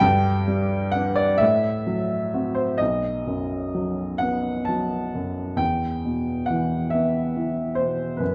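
Mournful and yearning, this brief cut from a longer romantic nocturne for solo piano drifts in a rubato 12/8 as an open, up-front baby grand with long sustain moves from G through F#dim/A and B to a settling E minor at 5.6 seconds, its dark production softened by a moderate recital hall reverb.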